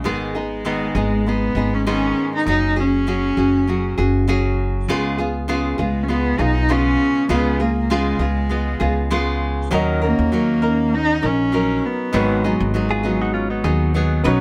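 A dark, bowed cello sings a tender, wistful melody with vibrato over bright, fingerpicked nylon-string guitar with audible finger squeak and woody pizzicato upright bass in this close, dry acoustic pop excerpt at 99 BPM with a light 16th-note swing, as a clear concert grand piano enters softly in the background at 9.7 seconds and a clean, compressed direct-recorded electric guitar adds a brief picked second line from 12.9 seconds.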